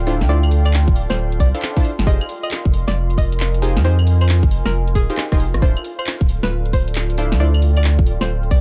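A twangy, nasal resonator pluck carries the melody over a deep, saturated sub bass, a smooth detuned analog pad in the background and a warbling, lo-fi tape-like pad, as this skippy, moody two-step garage piece moves from Dm9 to Fm9 and back. Punchy, bright sawtooth chord stabs and a layered garage kit of cracking snare, hi-hat, handclaps, claves, rim click and shaker come in almost at once, and a tight, up-front electronic kick joins at 0.9 seconds. A drum fill lands at 5.2 seconds, the stabs stop at 7.5 seconds, and the dark, dry production keeps the swung groove close and heavy at the low end.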